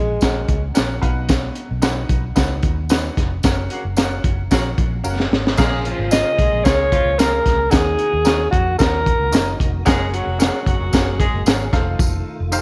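A straight, uptempo 4/4 groove from a crunchy, saturated breakbeat drum kit with a punchy kick and high-tuned snare drives this uplifting 1960s-style soul excerpt, joined by a round, foam-muted electric bass, a clear baby grand piano and a jingly, bright tambourine, while a saxophone section adds a smooth second line from 3.7 seconds, a mellow tonewheel organ with rotary speaker and key click enters very quietly at 5.6 seconds, and a breathy, intimate alto saxophone with scooped notes and vibrato carries the melody, briefly at the start and again from 6.1 seconds, set in light small-room reverb.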